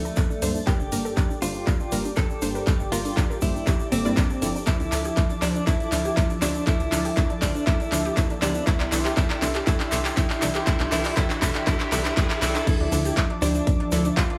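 An overdriven, punchy electronic kick sits up front in this driving, bittersweet progressive house excerpt at 120 BPM in D minor, entering at 0.2 seconds together with a layered dance kit with metallic hats, handclaps and crash, while a plucky sawtooth bass with tube saturation pumps underneath. A clean, direct-recorded electric guitar carries the melody through tremolo, low-pass filtering and dub echo, over a smooth chorused pad, lush detuned unison stabs with a cassette-tape colour, filter-swept chorused arpeggios, a distant grainy shaker and a very quiet twinkling granular shimmer. The chords move from Dmadd9 through Gm and C during a build-up with a drum fill, filter sweeps on the plucks and a faint riser from 7.9 seconds, before the drop lands on Dmadd9 at 12.7 seconds.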